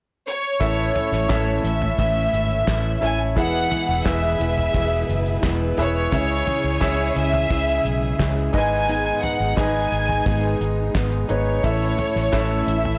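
Blown-out and overdriven, this hopeful, uplifting piano-driven pop passage sits in a large studio reverb, with an up-front violin section carrying a smooth melody with light vibrato from 0.3 s. At 0.6 s the rest joins: an intimate concert grand piano with audible action noise and long sustain, a fingerpicked jumbo steel-string acoustic guitar playing a full-bodied riff, a round, foam-muted electric bass, and a dry, dark 70s drum kit with a fat snare, tight kick, hi-hat, toms and handclaps. Beneath them, a very quiet, lush symphonic string section holds sustained chords over a progression that moves through A, E, C#m and G#m.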